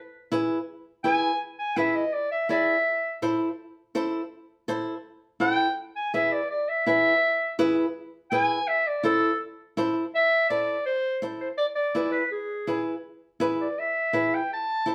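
The recording has the feel of a band playing live in one room, wrapped in a moderate studio reverb. This short cut from a longer Latin piece is danceable and passionate, moving in a straight four-beat feel. A small, acoustic nylon-string guitar sits up front with fingerpicked accompaniment, entering at 0.3 seconds and carrying the harmony as it shifts between E and A minor. A warm clarinet in classical style takes the melody as a solo, first appearing at 1.0 seconds. It returns at 5.4 seconds and sings on to the end, sounding both up front and distant, with a roomy glow around its tone. Around 10.1 seconds the music moves into a new section, and the guitar and clarinet carry it through to the close.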